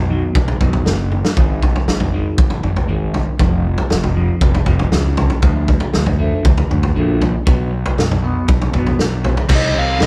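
Cathartic and brooding, this quiet-loud alternative rock excerpt opens with twangy phaser-washed guitar arpeggios from a small old amp sitting in the background over a growly fuzz bass, joined at 0.4 seconds by a loose, punchy, up-front drum kit that plays a fill at 1.1 seconds, before a scooped high-gain riff guitar comes in at 9.5 seconds and a dark, smooth overdriven lead melody follows at 9.6 seconds as the band plays live in one room with light reverb.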